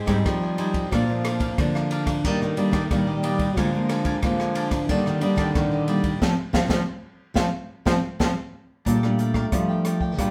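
A straight 4/4 groove at 91 BPM drives this festive, lively samba-and-choro excerpt in Bb major. A dark, close-miked trombone carries a jazz-style second line with light vibrato over a crisp, brightly picked cavaquinho and a fingerpicked classical nylon-string guitar whose finger squeaks are audible. A second nylon-string guitar plays a full-bodied, deep bass line, while an up-front open jazz kit adds dusky cymbals, a high-tuned snare, a boomy kick and rim clicks. The band plays live together in one studio room washed in reverb, and it hits a shared accent from 6.2 seconds. A drum fill at 8.5 seconds then leads into a new section on a Bb6 chord at 8.9 seconds.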